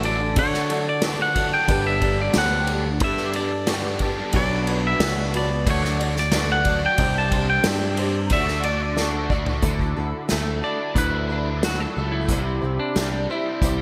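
A bright, 1980s-style digital production sits in a lush hall reverb with a touch of small-room ambience, giving this jangly folk and heartland rock cut a polished glow. A twangy, clean electric guitar carries the melody with a warbly pitch drift and delay, over a boxy, swing-flavoured acoustic guitar whose picking leaves audible finger squeak. A double-tracked overdriven electric guitar drives a riff thickened by ensemble chorus, while a round, punchy picked bass and an up-front acoustic drum kit, played with bundle sticks and wrapped in gated reverb, anchor the straight 4/4 groove. A very quiet vintage grand piano with deep lows adds smooth support until 9.4 seconds, just after a drum fill begins at 9.0 seconds. At 9.6 seconds the music moves into a new section as the clean electric guitar takes a solo over the shifting chords to the end of the excerpt.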